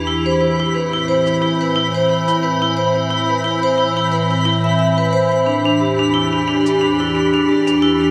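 A lightly swung 4/4 pulse at 89 BPM, with a 56% swing on the sixteenths, underpins this intricate, eerie IDM excerpt, which moves from Amadd9 at 0.1 seconds to Em7 at 5.5 seconds. Up front, an icy glass pad holds sustained chords from E2 to B5, its crystalline, detuned sine tone with a noise layer swelling in slowly and lingering through chorus and built-in reverb. Sharing the foreground, a vibraphone struck with hard mallets plays metallic, ringing arpeggios between D4 and E5, with a medium motor vibrato, a boxy small-room character, a low-pass filter and a diffuse ambient delay. High above, a twinkling granular texture sparkles on B5 with an octave-up FM shimmer and lush chorus. Deep in the background, an electronic shaker re-recorded in a large room appears briefly from 1.3 to 2.4 seconds and again from 6.7 to 7.8 seconds, and a 2.7-second hall reverb soaks the dreamy mix.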